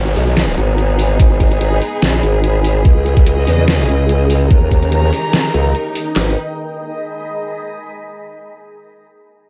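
The rhythm sits in a half-time 4/4 with a light swing on the sixteenths, driving an aggressive, chaotic stretch of heavy wobble dubstep cut from a longer piece. Up front, a formant-sweep wobble bass built from pulse and sine tones growls with chorus and overdrive, its fast attack and compressed sustain dominating the low end from the start. Two layered electronic drum kits carry the beat: one brings metallic hats and a deep snare from 0.2 seconds, while the louder, forward kit adds a knocking kick, handclaps and another deep snare from 1.2 seconds. Beneath them, a dark chamber string ensemble holds bowed, vibrato-laden chords with a soft attack and smooth top, pumping against the sidechain as the harmony moves from minor chords through a major one and back to minor. A very quiet electronic downlifter falls away early, and a granular cloud pad of detuned sine tones drifts in with its own built-in reverb, its blurred, evolving haze pumping too and lingering alone after the other parts stop, carrying the final seconds to 7.8.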